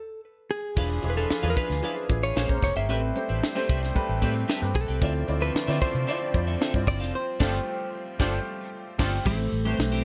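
Heard in a small room's ambience, this slick, bittersweet 1980s jazz-funk pop passage opens with a dark, compressed hollow-body jazz guitar carrying the melody through a delay on its own until the band enters at 0.8 seconds, where an airy, dry funk kit with a high-tuned snare and tight kick sits up front beside a round, foam-muted fingered bass, a natural-sounding baby grand piano with lush chorus supplies accompaniment, a twangy clean electric guitar with analog chorus plays a riff, and a vintage horn section on a second line and floating bowed studio strings on sustained chords hover in the background, leading into a band accent from 7.1 to 9.3 seconds.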